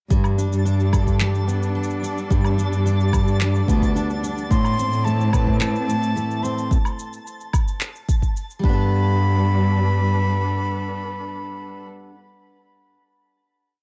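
A pastoral, delicate folktronica piece opens with full-bodied fingerpicked arpeggios on a steel-string acoustic guitar through delay, veiled con sordino string quartet chords, an expressive dark cello bass line with portamento, and a soft, tape-warm electronic kick with a clicking found-sound beat of shaker, woodblock and handclaps, all set in small room ambience. A twinkling granular texture holds a shimmering high note in the background, and at 4.5 s a breathy, bright jazz flute with a crisp chiff enters, playing hook-like motifs through delay. The beat stops by 8.7 s, leaving the strings, guitar and flute to settle on a final chord.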